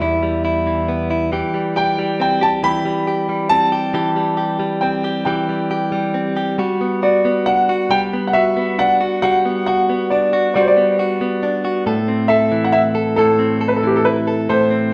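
Bathed in a wet stone-room reverb with a 1.2-second tail, as if the band were playing live together, this aching, melancholic pop fragment drifts at a slow 46 BPM in a straight 6/8, with a natural, warm grand piano singing the melody over a clean, compressed electric guitar that is recorded direct, picked and sits up front as accompaniment, while the harmony moves from Em through C/E and Gmaj7 to Am.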